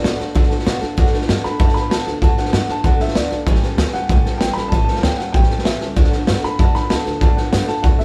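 A straight four-beat rhythm powers this rowdy, upbeat rockabilly cut, taken from a longer piece and played by a band together in one room with light reverb. The raw garage drum kit sits up front, its boomy kick, medium-tuned snare and hi-hat saturated and gritty, with a rolled-off top and a pumping small-room sound. An upright bass joins at 0.1 seconds, plucked on gut strings with a dark, thumpy tone that stays in the background, while a bright, picked steel-string acoustic guitar carries the accompaniment. On top, an upright piano takes the melody high in its range, intimate and boxy, with audible action noise and long sustain. The harmony moves from D to A7 at 3.5 seconds and back to D at 6.0 seconds.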